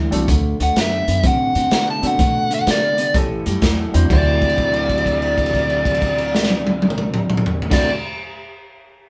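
Heard as a band playing live in one room, this short cut from a longer piece sits in moderate studio reverb. It is a swaggering, rollicking electric blues shuffle at 125 BPM in 4/4 with swung eighths, set in D mixolydian and moving from D7 to A7 and on to D9. Up front, a crunchy breakbeat drum kit sounds saturated and gritty, with a tight kick, a medium-tuned snare, hi-hat, toms, crash and a rolled-off top. A thumpy, plucked upright bass anchors the low end, while an electric guitar through a small old amp drives a picked, compressed, slightly broken-up riff, and a worn, woody, slightly detuned upright piano adds long-sustaining accompaniment in the background. From 0.6 seconds a dark, overdriven lead guitar carries the melody high above the band, and a held note sounds from 4.1 to 7.7 seconds.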